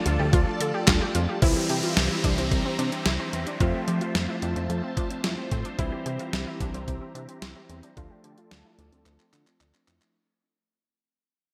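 A thumpy, up-front detuned 8-bit drum machine with handclaps, hi-hat and gated reverb drives this nostalgic, wistful synth-pop excerpt at 110 BPM in 4/4, under a glossy chorused synth bass, a bell-like tine electric piano, a swirling phased string machine holding sustained chords and a punchy detuned unison pluck playing arpeggios with delay. The chords move through Dm, C7 and Fmaj7, and at 1.4 seconds an electronic downlifter enters as a filter sweep and fade-out begin, with a drum fill from 9.1 seconds. Bright 1980s-style digital production sits in a lush hall reverb.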